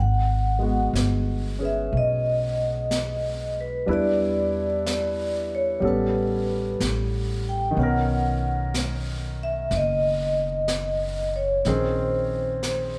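A moderate recital-hall reverb, with about 1.5 seconds of decay, surrounds this intimate, melancholic jazz ballad fragment, which sounds recorded in a church or concert hall. At a slow 62 BPM in 4/4 with a gentle swing on the eighths, the vibraphone carries the melody from the start, its medium-hard mallets giving a metallic, ringing, dark and smooth tone with a medium motor vibrato. The woody pizzicato upright bass, strung with steel and sitting up front, plays the low line alongside it, while a warm concert grand piano with a deep bass joins in accompaniment at 0.6 seconds. A brush kit enters at 1.0 seconds, its high-tuned snare and hi-hat sounding natural, as if in a small room. The harmony moves in G# minor from G#m7 through Em7, A9 and Bmaj9 before settling on A#m11.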